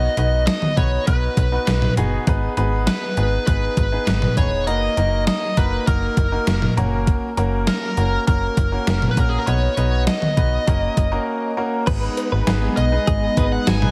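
A straight 4/4 groove anchors this cool, melancholic synth-pop piece, driven by a gated 80s digital drum machine whose thumpy kick, gated-reverb snare, hi-hat, toms, cowbell and crash come through overdriven and up front. A snappy, slap-like FM bass with a metallic attack holds down the low end, while a bright grand piano with audible action noise and long sustain supplies the accompaniment. A smooth overdriven lead guitar carries the melody through tape echo as the chords move from B to G#m, D#m/F#, F# and Badd9. After a brief break at 11.3 seconds, the music shifts at 11.9 seconds, when a brassy, detuned analog pad with chorus enters alongside a direct-recorded clean electric guitar with tremolo and tape echo, the guitar sitting in the background. The mix has a heavily compressed, radio-like sound with light reverb.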